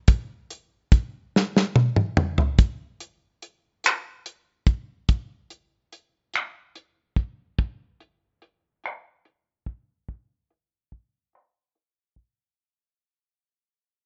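Late-night and sultry, this slow R&B fragment in 6/8 at 48 BPM features a lone damped 70s acoustic drum kit, up front, dry and rolled-off on top, with finger snaps, hi-hat, a tight kick, a medium-tuned snare and toms under light reverb, where a drum fill from 1.3 to 2.6 seconds leads into a filter sweep and fade-out that run to the end at 12.6 seconds.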